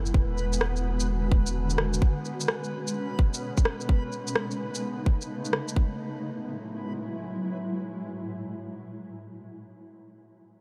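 This cut from a longer future garage piece opens with a cloudy granular pad holding blurred, detuned chords, a deep, round sub bass and a reversed, dreamy texture swelling in its own built-in reverb. The mood is melancholic and ghostly, at 128 BPM in 4/4 with 66% swing on the sixteenths, in F# minor. A tight, tape-warm electronic kick and a layered shaker and rim click sit up front, while the pad and the mellow sub bass both carry sidechain pumping. The bass drops out at 2.0 s as the chords move through E9, G#madd11/B and B13. By 5.9 s the drums and reversed texture have stopped, and the evolving pad lingers alone on F#m9 until 9.4 s. A light digital ambience surrounds the whole passage.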